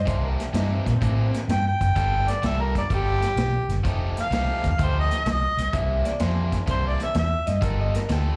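This short cut from a longer live club performance has the roomy, lightly reverberant sound of a gig heard through the venue's PA. It's a soulful, laid-back electric blues shuffle in 4/4 with a loose swing, moving through C9, G9 and F9 chords. A mellow harmonica carries the melody up front with a soft attack, scooped notes and a jazz-inflected solo voice, its tone roughened by overdrive and set back in plate reverb and slapback echo until it drops out at 7.5 seconds. Beneath it, a bright, overdriven garage guitar picks a raw riff with slapback echo, while a second electric guitar through a small old amp adds a slightly broken-up, lo-fi second line that sits out between 1.4 and 5.7 seconds. A dark, round, foam-muted fingered bass sits prominently in the mix, and a vintage acoustic drum kit of hi-hat, punchy kick and medium-tuned snare keeps the shuffle with a rolled-off top.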